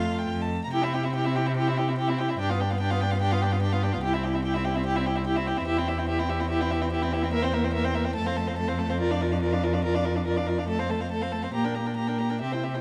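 Light reverb surrounds this lively, spirited excerpt of a quick classical-period movement for string quartet at 144 BPM in 4/4 with a rubato feel, moving from C major to F major at 7.3 s, as a dark, woody first violin carries the melody above a second violin's focused, smooth-topped line, a distant viola's even accompaniment and an up-front cello bass with soft attacks and expressive portamento, all four bowed with vibrato.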